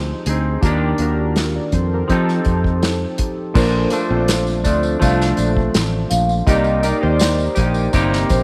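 Indie bedroom pop with a hazy, nostalgic mood, built on a clean, fingered hollow-body electric guitar with analog chorus and a warbly pitch drift, evolving, detuned square-and-sawtooth analog keys with a filter sweep, chorus and cassette-tape color, and a round, foam-muted fingered bass with transformer saturation sitting up front. An airy, polished small-room drum kit played with bundle sticks enters at 0.3 seconds with a punchy kick and medium-tuned snare, and at 3.6 seconds a ringing, metallic vibraphone with fast motor vibrato, subtle chorus and tape echo joins as a second line, alongside a jingly tambourine mixed low. Light reverb and studio ambience frame this short passage cut from a longer piece, as the harmony moves from Fm7 and Ebmaj7 through F7 to Bbmaj7 and Cm7.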